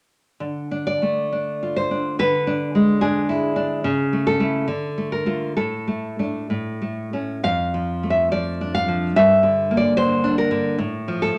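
Set in a flexible 2/4 with a rubato feel, the pulse drifts between 62 and 75 BPM. This romantic piece for solo classical guitar in D minor has a wistful, intimate mood. A single nylon-string guitar, fingerpicked and full-bodied, sits up front from 0.4 seconds until 11.4 seconds, covering a range from F2 to F5. The harmony moves from Dm through E7/D, A/C#, Asus4 and A, then to Dm/F and Gm6, and settles on a rootless Dm/A near 10.8 seconds. A moderate, large studio reverb gives the guitar a sense of space. This short passage is cut from a longer work.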